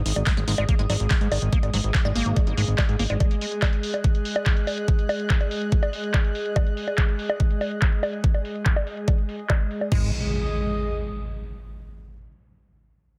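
A dense, heavily limited mix with light digital ambience carries this psychedelic, alien psychedelic trance excerpt at 143 BPM, where an overdriven, knocking electronic kick sits up front beside a filter-swept, overdriven kit of bright hats, bongos, handclaps and crash, while a fat, wave-folded analog bass and a squelchy, resonant acid riff with chorus and delay drop out after about three seconds and return briefly at 9.9 seconds, an airy, breathy, detuned pad pumps beneath throughout, and an electronic impact lands at 10.1 seconds.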